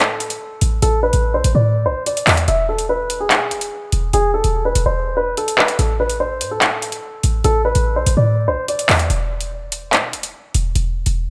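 A grand piano carries the melody up front, its intimate, natural tone full of audible action noise and long sustain, treated with a low-pass filter sweep and a digital delay. This cut from a longer drill track sits in A harmonic minor at 145 BPM, felt in half-time, with an ominous, menacing mood. Beneath it, a short 808-style bass hits punchy and tight, a sine tone with a noise layer, fast attack and mellow decay. An electronic drill kit with overdriven, metallic hi-hats and handclaps also sits up front. The harmony moves between A5 and E chords and lands on E5 at 9.1 seconds, where the piano drops out and the bass and drums carry a short break to about 11.3 seconds, all in a light reverb.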